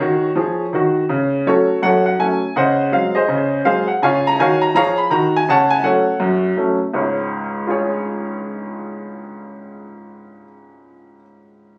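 Stride piano jazz, playful and swinging at 164 BPM in Db major, with a solo upright piano that sounds clear, woody and up front, ranging from deep bass to bright upper notes across about 11.8 seconds. The harmony sits over a Db pedal, moving through Gbm/Db and Ab7/Db, returning to Db at 4.0 seconds, then passing through Gbm/Db again before settling back on Db at 6.9 seconds. A moderate studio reverb and compression give a sheen to what feels like a phone recording taken from inside the room, cut from a longer performance.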